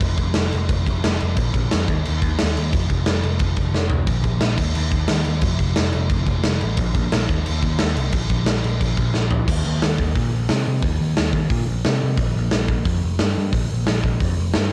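A straight 4/4 punk rock beat charges along at 178 BPM in Eb major, with a big, punchy acoustic rock kit sitting up front, its bright cymbals, medium-tuned snare, hi-hat and toms carrying a cassette tape grit and breaking into fills around 3.7 and 9.2 seconds. Alongside it, an overdriven, growly picked electric bass roams from F1 to C3. The dry, home-cassette sound of this short, energetic and rowdy fragment shifts into a new section at 9.5 seconds.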